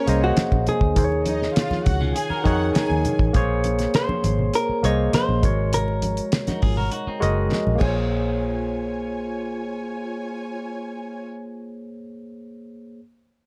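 Lush 1970s-style soul in Bb minor at 101 BPM, this short, smooth and cinematic passage moves through rich extended chords such as Bbm9, Eb7sus4 and Ab9sus4. A dark, compressed hollow-body jazz guitar carries the melody until 7.5 seconds, while a barky, lightly overdriven tine electric piano sits up front with accompaniment that runs the full 13.0 seconds. Underneath, a foam-muted fingered electric bass gives round, punchy low end, and a damped drum kit with a fat snare, tight kick and dark cymbals plays until a drum fill closes out at 8.1 seconds. Very quiet congas with soft hands add a ringing touch, a clean picked electric guitar plays a riff in the middle, and an intimate, close, bowed studio string section with gentle vibrato and a soft sul tasto attack provides a second line at the start and again in the closing passage. A small room reverb surrounds the whole mix.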